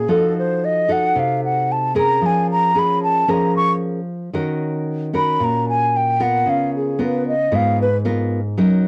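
Bossa nova at 113 BPM in a melancholic, intimate mood, cut from a longer piece, with an airy, hollow concert flute singing the melody up front with vibrato and tongued notes until 8.0 s. A fingerpicked nylon-string guitar, full-bodied and carrying a deep classical tone colored by cassette tape, accompanies through chords moving from F7b9 to Bbm7/F, Ebm7 and Db6. Light reverb surrounds this home cassette recording, giving it a close, private character.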